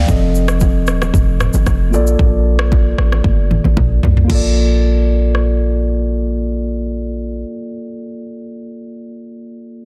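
A straight 4/4 afrobeats groove at 114 BPM in Bb major rides on an electronic, produced drum kit with a deep, up-front kick, rim clicks, shaker, toms, crash and a softly clipped snare, while close, dry congas and bongos played with soft hands sit in the background. A boomy, sine-based 808-style bass with a noise layer and a fast, decaying attack sits up front beneath a mellow, clean tine electric piano heard through its built-in speakers, moving from F7 to Bbmaj7 in a breezy, sunny mood. A drum fill from 3.2 to 4.3 seconds leads into the next section, the drums drop out at 5.5 seconds, and the piano plays on alone after the bass stops at 7.4 seconds in this dense, dry cut from a longer piece.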